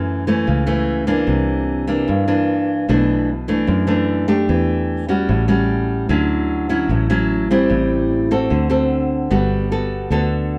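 Relaxed and breezy, this short bossa nova passage moves at 150 BPM in D major, with a fingerpicked nylon-string guitar sitting up front in a full-bodied, classical tone, its fresh strings catching the occasional finger squeak. Beneath it, a fingered electric bass adds a dark, round, foam-muted line, direct and amped, while a moderate echo-chamber reverb lends the pair a sense of space. The guitar's rich chords drift from F#m7 through C9, Em11 and Dmaj9 before settling on Gmaj9 at 9.3 seconds, shortly before the excerpt is cut.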